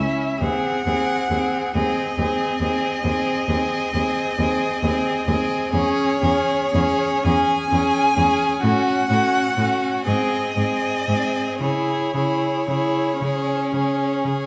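A rich, distant violin carries the melody with vibrato and portamento in this melancholic, elegiac fragment of a slow romantic movement for string quartet in a rubato 12/8, alongside a clear, focused second violin up close, an expressive viola with its own vibrato and portamento, and a smooth, even cello bass up front, all four bowed, as the harmony moves from G#7/D# at 0.4 seconds to a closing C#m at 11.6 seconds within the bloom of a scoring-stage reverb.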